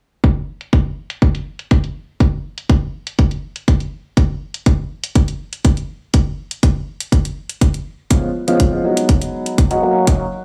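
A punchy, up-front electronic kick and a layered hi-hat with a low-pass filter drive this funky, sunny filtered disco house excerpt at 122 BPM in F# major, with a very quiet, close tambourine in a small room, and a natural grand piano enters at 8.1 seconds, pumping through a phaser and filter over C#7, G#m7 and F#6 chords.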